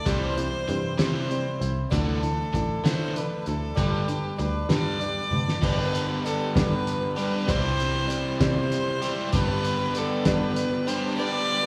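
Bathed in a wet concert-hall reverb, this hopeful, jangly folk rock and heartland rock excerpt moves at 65 BPM in 6/8, with a nasal, up-front bowed fiddle carrying the melody over a bright, boxy picked acoustic guitar with a swing feel, a double-tracked, scooped overdriven electric guitar riff, a dark, round foam-muted electric bass and a muffled, cloth-damped drum kit with a fat snare that plays a fill at 5.3 seconds, before a very quiet tonewheel organ with slow rotary speaker adds sustained chords from 9.3 seconds.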